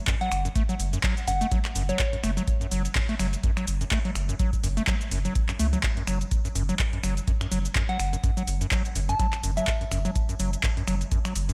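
A squelchy, resonant square-wave acid bass with overdrive and delay carries the riff through this raw, gritty acid house excerpt in F# minor at 125 BPM, its filter-swept notes snapping in and decaying over a 56% swing on the 16ths. A dry, tape-toned electronic kick and a booming analog drum machine of finger snaps, handclaps, metallic hi-hat and shaker drive the 4/4 groove, while a round sine sub bass with sidechain pumping sits up front underneath. A soft, pure FM bell, treated with chorus, phaser and diffuse ambient delay, plays a gentle melody from 0.2 to 2.1 seconds and returns at 7.9 seconds, all within a light reverb.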